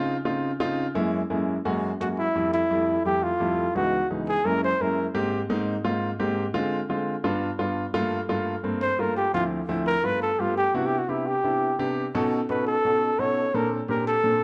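A straight 4/4 pulse drives this sultry, up-tempo jazz excerpt, cut from a longer piece. An upright piano with a woody, polished tone and long sustain holds the accompaniment throughout, sitting up front and spanning a broad register from deep bass notes to the middle range. A close-miked trumpet with a dark, breathy sound and light vibrato enters at 2.0 seconds with the melody. It returns at 8.8 seconds in a solo that carries the second half, which begins at 7.9 seconds. The harmony moves restlessly through lush major sevenths, ninths and minor sevenths, opening on Dbmaj7 and closing on Bbmaj7. A plate reverb on the trumpet and a moderate large-studio ambience give the dark, warm production a roomy depth.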